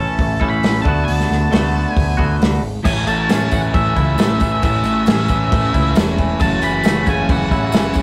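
Wistful yet upbeat, this 8-second cut from a longer indie rock piece moves at 135 BPM in a straight 4/4 feel in A major, set in a wet small room with the rough character of a rehearsal-room recording. A dark, fuzzy octave-fuzz lead guitar carries the melody in a high register, while a twangy, clean, fingered electric guitar and a picked twelve-string electric guitar, sitting further back in the mix, play riffs beneath it. A growling picked electric bass, overdriven and round, anchors the low end, and a loose, acoustic indie drum kit enters at 0.2 seconds up front with a tight kick, medium-tuned snare, hi-hat and crash cymbal. The harmony moves from A to D6, and from 2.8 seconds a very quiet, bell-like glockenspiel struck with hard plastic mallets adds a second line high above, joined at 2.9 seconds by a jingly tambourine in the background. The chords return to A before shifting to F#m7 at 6.4 seconds, lending a bittersweet tinge to the bright drive.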